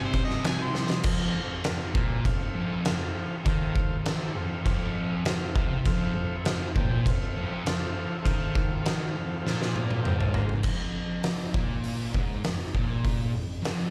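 Swaggering and rowdy, this garage rock clip, cut from a longer piece, struts along at 100 BPM in a straight 4/4 in F major, sounding like a live gig heard through a club PA with plenty of room reverb. A thick, dark fuzz guitar, double-tracked and picked, drives a low riff from F2 to C4 through distortion and slapback echo, running from the start to the very end at 13.9 seconds. An oversized, low-tuned acoustic drum kit sits up front with a punchy kick, fat snare and dark cymbals, its saturated, gritty sound pumping in a bright stone room as it works crash, hi-hat, toms, kick and snare. A clear harmonica with light vibrato and a smooth top plays a brief solo melody, overdriven, only in the opening second, while a vintage, reedy combo organ holds clean sustained chords until 10.6 seconds. The harmony moves from C to F, and drum fills mark the turns, the second one shared with an organ fill just before the chords drop out and the guitar and drums carry the close.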